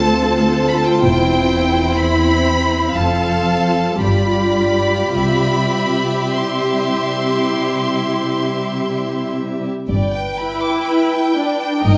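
From the first moment, a tender, serene slow romantic movement for string orchestra unfolds in C major at 49-65 BPM with a rubato feel, its clear, focused violins singing the melody alongside a rich, expressive chamber violin second line, while dark, woody violas accompany and a soft-attack cello section joins a distant double bass on the bass, every section bowed with vibrato in a moderate scoring-stage reverb as the harmony moves from Dm7 through F and G7 to C before turning to G at 9.9 seconds in this fragment of a longer piece.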